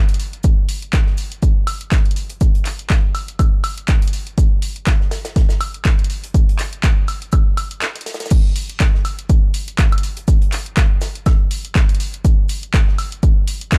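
Dark and dry in feel, this bittersweet yet energetic house excerpt at 122 BPM swings its 16ths around an up-front, punchy analog kick, re-recorded in a large room, that enters at 0.4 s. A tape-warm analog drum machine adds crash, handclaps, hi-hat and woodblock, while a faint small-room acoustic kit of high-passed hi-hat, shaker and medium-tuned snare sits in the background, all carrying on through a brief break at 7.8 s before the drop lands at 8.3 s.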